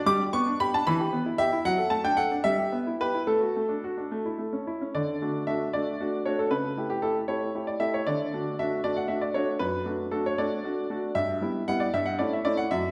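A clear, present baby grand piano plays alone and up front through this elegant, cheerful classical-period sonatina in D major, moving in 6/8 at 77 BPM with rubato across a range from F#2 to D6, its opening phrase giving way at 4.9 s to a new section that opens on D and runs until the 12.9 s cut, all set in a wet recital-hall reverb heard from further back in the room.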